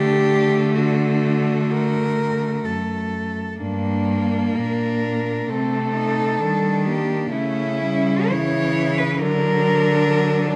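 A rich, bowed cello carries the yearning melody up front, its vibrato smooth and its sound slightly distant. A second cello sings an even countermelody beneath it, a clear, focused cello plays the accompaniment, and a bass cello with a smooth top also sits up front, all with vibrato. This elegiac classical fragment for cello ensemble moves in a rubato 4/4 at 58-70 BPM through D, Gm, Cm and A7/C# back to D, captured by close, detailed microphones with light reverb.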